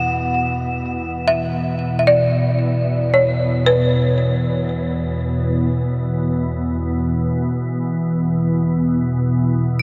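A hard-mallet folk marimba sits up front, its woody, rustic, dark tone carrying a melody through a delay until it falls away at 6.7 s. Beneath it, a soft organ-like pad holds a low drone, its pure, full-bodied sound thickened by ensemble chorus and its own reverb, with a slow attack and long release. High above, crotales add a shimmering, bell-like ring struck with plastic mallets, sitting well back in the balance. The pad and crotales carry on alone to the close at 9.8 s, leaving a haunting hush. This short cut of meditative world music is soaked in a huge, dreamy reverb that lets every note hang in the air.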